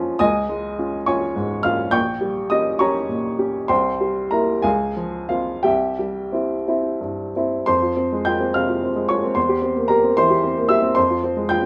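A woody, vintage-toned upright piano, up front with short sustain, plays this passionate, brooding romantic character piece alone in a rubato 6/8, moving through Db, C7 and Dbmaj7 to C before a second section at 7.7 seconds turns to F minor and C7/E, heard in a moderate stone-room reverb in a passage cut from a longer work.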